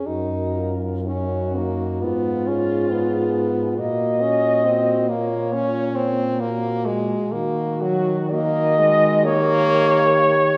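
In a freely pulsing, rubato 4/4, this tender, serene classical passage for horn quartet sets a mellow French horn melody with light vibrato up front, a clear, vibrato-touched horn accompaniment also near the front, a dark second-line horn in the background, and a soft-attacked bass horn with vibrato, all heard from further back in a reverberant recital hall as the chords move from Gbmaj7 through D#m to D#7.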